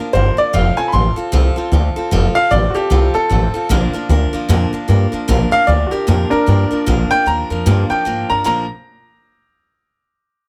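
A picked steel-string acoustic guitar opens this upbeat, retro rockabilly excerpt, its boxy, bright tone wrapped in plate reverb as it picks out accompaniment over a swung four-beat feel. From 0.1 seconds a clear, polished upright piano carries the melody up front with its own plate reverb, while a pizzicato upright bass with gut strings adds a thumpy, woody low end. The short fragment moves between a few chord changes in a lightly reverberant room before the parts stop at 8.7 seconds.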